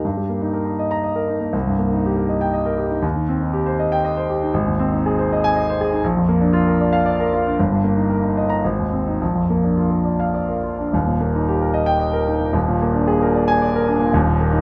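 Bittersweet and brooding, this romantic classical character piece for solo grand piano moves in a rubato triple metre, its natural, long-sustaining tone set up front and captured closely in a dry room as it turns through a chord progression before shifting into a new section at 10.9 seconds, in a fragment cut from a longer work.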